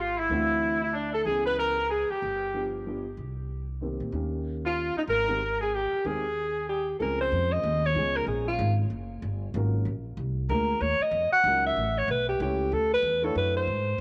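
A mellow, vibrato-laced alto saxophone carries the melody up front in this sophisticated, swinging jazz waltz cut from a longer piece, joined by a clear, punchy trumpet with scooped notes on a second line until 6.9 s, while a woody pizzicato upright bass holds down the low end and a dark, boxy upright piano comps through a colourful run of ninth, seventh and major-seventh chords under a moderate plate reverb.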